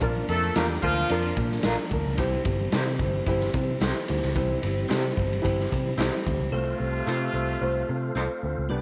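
The sound is small-room and vintage, with light reverb and a gritty, saturated drum kit sitting up front beside a round, foam-muted electric bass. This short cut from a longer piece is uptempo 1960s-style soul at 110 BPM in a straight 4/4, centred on C mixolydian with a warm, uplifting mood. A dark, boxy concert grand piano and a very quiet, mellow tonewheel organ with percussion, chorus vibrato and fast rotary speaker hold the harmony as the chords move from Bb to C and then settle on F over C. A twangy, slightly broken-up electric guitar through a small old amp adds tremolo stabs from 0.5 seconds, while a jingly tambourine rides alongside the punchy kit until both stop at 6.4 seconds. A tight horn section with light vibrato plays a second line in a brief burst near the start and returns at 6.5 seconds as the harmony shifts, carrying the close with piano, organ, bass and guitar.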